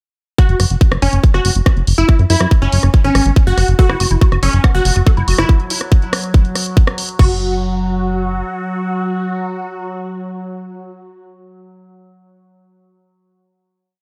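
A straight 4/4 psychedelic trance pulse at 141 BPM drives this short, intense piece: a tight, up-front four-on-the-floor electronic kick and a programmed kit of closed and open hats, rim clicks and crash, both in studio reverb, run from 0.4 s until the groove gives way to a final held note at 7.2 s. A punchy, dark analog bass rolls in sixteenths beneath a bright, detuned supersaw stab that repeats its riff through phaser, delay and sidechain pumping. A woody, warbling wave-folded pluck traces an accented acid line in a 12-step loop drifting against the bar, and an overtone-sweeping drone on F#3 enters with a slow attack at 4.9 s, its resonant, chorused sustain pumping beneath the stab to the end.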